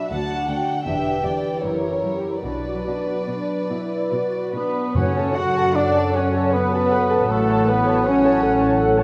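Bright, ringing harp arpeggios, sul tasto violins in a dark second line, woody violas, lush double basses and pure, floating cellos open this yearning, melancholic slow romantic orchestral movement in 3/4 at 70-82 BPM with rubato in B minor, with an intimate warm chamber violin section carrying the melody; at 4.5 s a smooth-topped solo cor anglais and a hollow, airy flute group add second lines, and at 5.0 s the music moves to F# minor as mellow horns and tight trombones sustain chords in the background, a solo trumpet with vibrato adds stabs and timpani sound until 6.1 s, within a moderate concert hall reverb.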